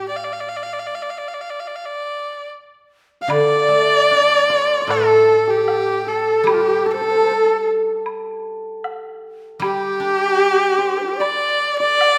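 Chinese traditional chamber music in D yu mode, wistful and tender, moves at a rubato 76 BPM in 4/4, opening with a clear, focused erhu melody full of vibrato and portamento over silvery, fingerpicked guzheng accompaniment. At 3.2 seconds a bright, reedy large dizi with a buzzing membrane and a shimmering hammered dulcimer join as second lines, with a close woodblock entering at 3.3 seconds. The erhu stays up front in a recital hall reverb, and the passage is cut from a longer piece.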